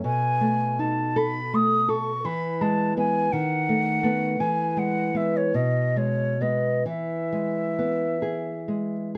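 Serene and tender, this brief fragment of a romantic duo in E major drifts in a rubato 6/8 at roughly 42-56 BPM, as an airy, straight-toned concert flute with a soft attack carries the melody between C#5 and D#6 over a small, thumb-plucked nylon-string guitar accompaniment that moves between B7, B69 and E chords, the pair heard through close, detailed microphones and light reverb.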